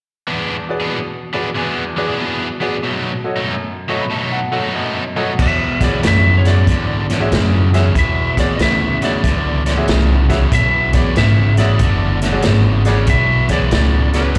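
Heard as a live gig through the venue's PA, the sound carries a small-room ambience blended with the bloom of a recital hall's reverb. This swaggering, rollicking electric blues shuffle swings in four, and it is cut from a longer piece. It opens with a bright upright piano, brilliant and woody with long sustain and a slapback echo, alongside a cranked stack guitar picking an up-front, overdriven riff. The piano takes a fill at 3.5 seconds, and at 5.4 seconds the full band arrives. A plucked upright bass adds a thumpy, woody bottom; a vintage drum kit brings a punchy kick, a medium-tuned snare, hi-hat, crash, and dark cymbals in a gritty, saturated, rolled-off tone; and a lightly driven, compressed lead guitar states a slightly broken-up melody. The harmony moves from E7 to B7 before settling on a rich E13 when the band kicks in.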